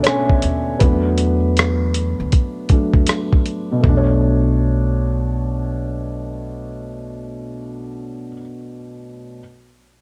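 A hazy, nostalgic lo-fi hip hop fragment opens with a soft, felt-muted upright piano, dark and intimate with audible action noise and a cassette-tape dullness, alongside a gritty, compressed sampler-style drum kit with a thumpy kick, rim clicks, hi-hat and toms in a swung groove. A woody, growly pizzicato upright bass enters at 0.4 seconds beneath piano chords moving between Bm9 and E7sus4, and the drums drop out at 4.1 seconds. Both piano and drums sit up front in light studio reverb.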